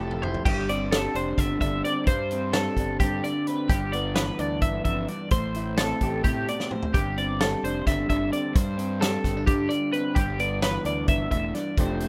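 Math rock and midwest emo in 7/8, this wistful, intricate section of a longer piece sets a twangy twelve-string electric guitar's bright, chorused arpeggios over an electric guitar through a small old amp, slightly broken-up and bathed in spring reverb, with a growly fuzz bass and a loose indie drum kit with dark cymbals and a fat snare whose fills open the track and return at 6.6 seconds, in a rough, dry home-demo mix cycling through Gsus4, Em7/G and Am9.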